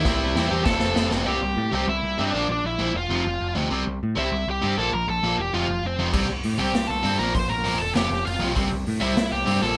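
Punk rock with a rebellious, upbeat drive at 197 BPM in straight 4/4, this excerpt opens on a drum fill from the raw, punchy garage kit before settling into a half-time feel as the kit drops out, then returns at 6.1 s with its saturated snare and crash in a bright stone room. Up front, a dark, high-gain lead guitar carries the melody over a double-tracked, overdriven rhythm guitar riff and a growling picked bass, cycling through C, F and Bb power-chord changes. The band sounds like it's playing live together in one room, with a light touch of reverb.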